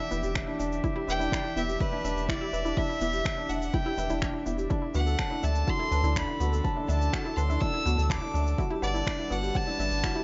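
Melancholic and intimate, this piano and strings electronica at 124 BPM in E minor, cut from a longer piece, sets a clear, floating solo violin melody over sul tasto string quartet chords, a mellow felt-muted upright piano riff and background sawtooth pluck arpeggios colored by chorus, delay and sidechain pumping, while a round, deep analog bass, also pumping, arrives at 0.1 s with electronic shaker and finger snaps, and a punchy up-front electronic kick enters at 0.4 s, all moving through Em7, D and Gmaj7 in light reverb and digital ambience with a soft, dulled top end.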